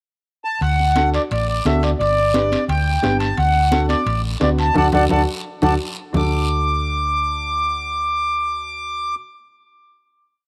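Cumbia at 174 BPM in D major, festive and danceable: a reedy, slow-beating accordion up front carries a motif-based melody over a dark, round hollow-body short-scale fingered electric bass playing a cumbia figure and woody upright piano triads, while raspy guiro joins ringing metal-shell timbales and high-tuned congas, the latter two sitting in the background; the percussion drops out at 6.2 s after a drum fill and band accent from 4.8 s, giving way to a final chord in light reverb until 9.2 s.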